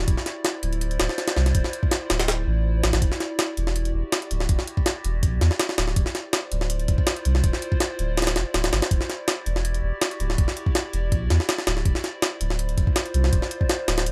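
Drum and bass with a jungle edge, this 163 BPM cut from a longer piece in straight 4/4 feels nostalgic and dark. A warbling, detuned, lo-fi pad holds sustained chords throughout, its slow attack and long release softened by chorus, built-in reverb and phaser, sitting quietly behind the other parts. Beneath it, a deep, round dub sub bass with a fast attack stays up front, its triangle and square-wave tone mellow and sustained. The jungle sampler-style kit enters at 0.1 seconds with a thumpy kick, a high-tuned snare and hi-hat, sounding compressed, pitched up and gritty with a tape-warm edge. The harmony alternates between Dm9 and Em9 every few seconds, and the dry mix keeps the drums and bass close and direct.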